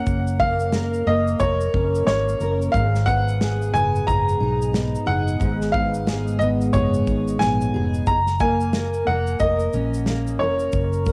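Easy-going and carefree, this acoustic pop excerpt moves at 90 BPM in F# major with a gentle swing on the sixteenths, drifting from F#maj7 to G#m7 and back to F#maj7 at 8.1 seconds. An intimate, woody upright piano with audible action noise carries the melody up front, colored by cassette tape and analog delay, while a full-bodied, double-tracked fingerpicked jumbo steel-string guitar, also on tape, sits close beside it. From 0.1 seconds a dark, round, foam-muted electric bass and a small-room country kit with punchy kick, shaker and medium-tuned snare join in, and moderate spring reverb gives the whole home cassette recording a cozy, lived-in sound.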